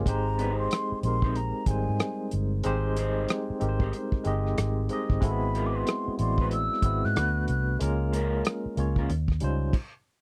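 A barky, lightly overdriven tine electric piano with medium tremolo sits up front in this smooth neo-soul R&B excerpt at 93 BPM in Ab major with swung sixteenths, alongside a round, punchy foam-muted fingered bass, a warm soul drum kit with a tight kick and dark cymbals, an airy, hollow concert flute carrying the melody with vibrato until 7.8 s, and a slightly broken-up, lo-fi electric guitar second line through a small old amp, in a dry, close 1970s-style studio sound before a brief stop at 9.7 s.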